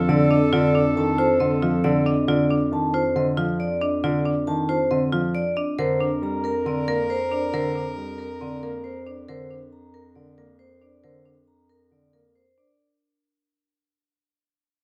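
A hypnotic minimalist classical pattern piece at 137 BPM in 4/4 opens on an F7 chord. A warm baby grand piano sits up front with long sustain, a close-miked marimba with medium hard mallets spins full, dry arpeggios, and a distant, punchy bass clarinet holds F2 beneath. The vibraphone carries the melody from 0.1 seconds with a metallic, ringing tone and slow motor vibrato in a boxy small room, while a bright soprano saxophone with light vibrato adds a second line in two short passages, returning at 5.8 seconds as the harmony moves to a rootless Gm/F, all under light reverb in an excerpt that fades out from its start.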